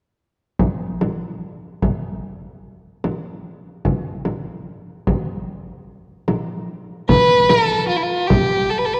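Cut from a longer Persian modal ensemble piece, this soulful, longing fragment at 74 BPM in a straight 4/4 opens at 0.6 s with a deep, close frame drum played with soft hands alone, until a rich, smooth, even bowed solo violin with vibrato enters up front at 7.1 s, singing between E4 and B4 over the drum until it stops at 8.5 s, all bathed in a concert hall's lingering reverb and the warbly pitch drift of worn cassette tape.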